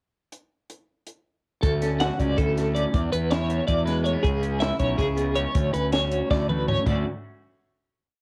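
A brisk 7/8 pulse at 321 BPM, counted in eighths with a straight feel, drives this short, playful and wistful math rock and midwest emo piece in D lydian. A compact cocktail drum kit opens alone with a pickup at 0.3 seconds, its dark, smooth tone marked by a high-tuned snare, a punchy kick, a rolled-off top, and touches of hi-hat, splash cymbal and toms. At 1.6 seconds the band enters together: a twelve-string electric guitar plays an up-front ostinato of clean, compressed, twangy arpeggios with tremolo, while an electric guitar through a small old amp adds a slightly broken-up rolling fingerstyle arpeggio, bathed in spring reverb. A fuzz-soaked, overdriven fingered electric bass sits up front with a warm tone and stays locked to the kick drum. The harmony moves through Dmaj7, E7 and C#m7 before returning to Dmaj7, and a drum fill at 6.3 seconds leads into the final chord. The home cassette recording keeps the room dry and intimate, lending both guitars a tape-worn character.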